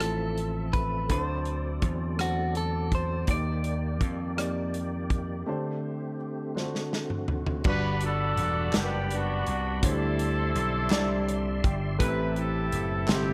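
Reverent and hopeful, this slow gospel piece in 6/8 at 55 BPM opens with a clean, compressed electric guitar carrying the melody through tape echo, over an intimate baby grand piano with audible action noise, a tonewheel organ sustaining chords through a fast rotary speaker and chorus vibrato, a punchy vintage slap bass, and an airy, polished country drum kit. After a drum fill, a vintage, jazz-style horn section with light vibrato takes over the melody at 7.7 s, and distant, hollow group handclaps join very quietly at 8.7 s. The piano adds a fill as the harmony moves from Gmaj7 toward Am9, in a room touched by light reverb.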